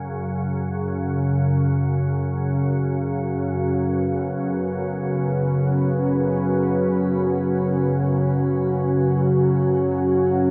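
A dark analog pad sits up front, holding sustained chords built from detuned sawtooth and triangle waves with a sub octave that gives it a deep, mellow, moody body, softened further by chorus. Beneath it an organ-like drone, also up front, holds the low register with a calm, vintage sine tone that warbles through ensemble chorus and its own built-in reverb. Both parts play together for the full 10.5 seconds, each with a slow attack and long release, and a filter sweep moves across the drone over that span. This is dark ambient drone music in free time, unsettling in mood and resting on a single C#sus4/F# chord. A huge, wet ambient reverb with an 8.3-second decay surrounds the sound, and this short passage is cut from a longer piece.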